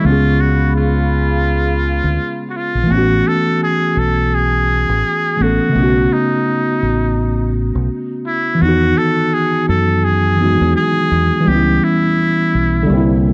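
A swung 84 BPM groove in 4/4 carries this melancholic, nostalgic lo-fi hip hop excerpt from a longer piece, with a round, punchy fingered electric bass holding down the low end as the chords move from C#7 through A69 and Emaj7 to C#m7b5. A worn, slightly out-of-tune tine electric piano sits up front in accompaniment, while a muted trumpet leads the melody with a buzzy, thin, vintage jazz tone, vibrato and scooped notes. A moody sawtooth pad with slow attack, chorus and phaser hovers in the background only until 2.9 seconds, and the dry home-cassette sound lends the trumpet and keys a filtered tape haze.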